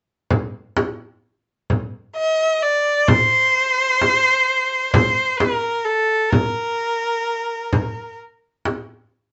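This Arabic maqam ensemble piece, cut from a longer work, moves in a hypnotic 10/8 at 129 BPM counted in eighths, with a straight feel and a longing mood. A frame drum opens at 0.3 seconds, played with hard hands and sounding warm, acoustic, close and dry up front. At 2.2 seconds a single bowed erhu enters with the melody, clear, smooth and even, with vibrato and sliding portamento, ranging from A4 to E5-47c and sitting close in the foreground. The erhu falls silent at 8.2 seconds, leaving the drum to finish the passage. The players share one room with a short, wet studio reverb, a rounded top end, and tuning set to A4 = 439 Hz.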